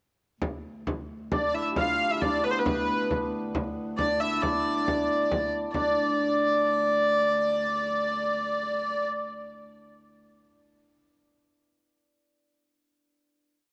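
A medieval dance in 6/8 at 91 BPM, counted in dotted quarters, keeps speeding up until 8.3 seconds, with a mysterious, driving mood that settles onto a final note from 5.7 seconds. A deep frame drum, close and dry with hard hands in an evenly spread pattern, carries the pulse until 5.9 seconds, beneath an intimate, soft-attack viola da gamba drone on D2 with light vibrato and an airy bow. Up front, a clear, smooth hurdy-gurdy plays a modal melody with ornaments and tape echo, while a shimmering hammered dulcimer rings out the same line with its own ornaments; the strings carry a cassette-tape colour, and the whole performance sits in a small home room with light reverb.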